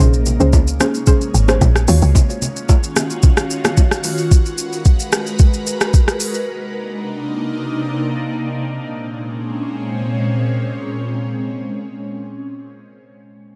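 Amapiano with a soulful, hypnotic mood, cut from a longer piece, opening on a drop where a punchy, woody log drum bass and a dark, round pluck playing stabs sound together only for the first 2.1 seconds, over an ethereal pad of sustained minor ninth chords treated with ensemble chorus, phaser and sidechain pumping. A smooth, up-front electronic drum kit with soft kick, hi-hat, rim click and shaker carries on until 6.5 seconds, while congas and bongos sit in the background of a small room until 4.2 seconds. The airy, bright pad then continues alone in a digital ambience through the closing section.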